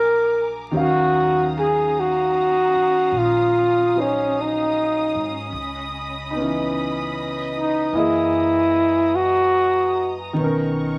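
Wistful and smoky, this short fragment of a jazz ballad moves at an unhurried pace in 4/4 with a swing feel on the eighth notes. A breathy flugelhorn carries the melody up front, its soft attack and light vibrato giving each phrase an intimate glow until it falls silent at 10.2 s. Beneath it, a clear concert grand piano with deep bass supplies the accompaniment, while a lush, distant string section holds bowed, focused sustained chords. A woody upright bass played pizzicato anchors the low end. The harmony drifts through rich extended chords such as Ebm9, Dbm9 and Gb13 before landing on Bmaj9, all set in a moderate studio reverb with a bed of vinyl crackle.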